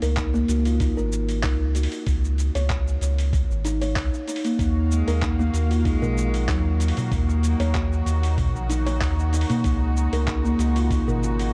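A dark, warm production with a small room sound frames this earthy, hypnotic organic downtempo excerpt at 95 BPM, set in a lightly swung 4/4. From the start, a woody, ringing kalimba plays arpeggios through tape echo over a round, up-front sub bass with sidechain pumping, while a gritty, compressed sampler-style kit of cabasa, handclaps and hi-hat plays alongside a thumpy electronic kick. At 4.6 seconds veiled, muted strings bring in sustained chords starting on Ebm. From 4.9 seconds a distant, pure cello floats a brief bowed melody with tape echo, and a clay-shelled darbuka sits in the background from 5.5 seconds.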